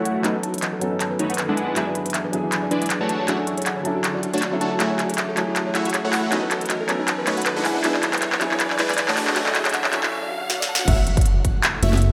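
Dreamy and bittersweet, this future bass excerpt at 158 BPM in F# minor builds for 10.9 seconds as a soft, felt-muted upright piano, a shimmering ambient pad, round tine-like synth plucks and huge, lush supersaw chords all pump, with filter sweeps on the pad, plucks and supersaws and dub echo on the piano, plucks and supersaws, over crisp trap hats, sharp snare, claps and crash fills, with a very quiet riser, before the drop at 10.9 seconds brings a fat analog bass, a punchy electronic kick and an airy lead into a lush hall reverb on an F#m7 chord.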